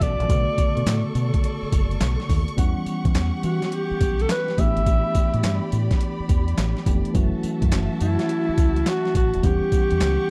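Slick and bouncy, this short new jack swing cut from a longer R&B piece rides a swung 16th-note groove. A breathy, subtone alto saxophone with jazz-style vibrato carries the melody up front, given a slapback echo, over a clean tine electric piano, lush bowed strings holding sustained chords, and a dark, round fingered electric bass. A gritty, compressed sampler-style drum kit with a thumpy kick, snare, hi-hat, handclaps and tambourine sits forward in a dry, close 1970s-style studio sound as the harmony moves from Bm9 through Em69, A9sus4 and F#m7.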